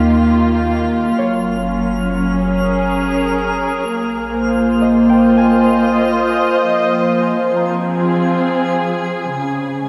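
Ambient piece in F minor at 66 BPM in 3/4, reflective and melancholic, where veiled, con sordino strings hold bowed chords up front through the whole 9.9 seconds over a round sine sub bass that fades out by 6.6 seconds, while a twinkling granular texture with octave-up shimmer fades in and a mellow, thumb-plucked concert harp enters at 1.2 seconds with ringing arpeggios and dub echo in the background, all set in a wet spring reverb and an echo-heavy mix moving from Eb through Gb and Bb7sus4 to Fm and Db5.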